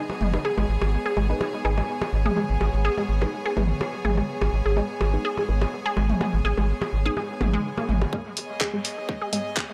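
A rich, earthy chamber string section opens this sparse, quirky minimal techno excerpt, its close, bowed ensemble sound carrying light vibrato and a sidechain pump. Almost at once, overdriven electronic percussion blips and toms arrive with dub echo, a round, deep analog bass sits up front with a sustained, dark tone, and a muted dub chord stab with phaser and chorus stays in the background. A juicy, squelchy resonant blip pluck carries the riff, its bright, detuned tone shaped by a filter sweep and trailed by dub echo. A tight electronic kick enters at 8.1 seconds as a build-up begins, joined at 8.4 seconds by a garage drum kit whose handclaps and bright hi-hats sit up front. The mix is echo-heavy, set in a moderate spring reverb with a lightly swung 16th-note feel.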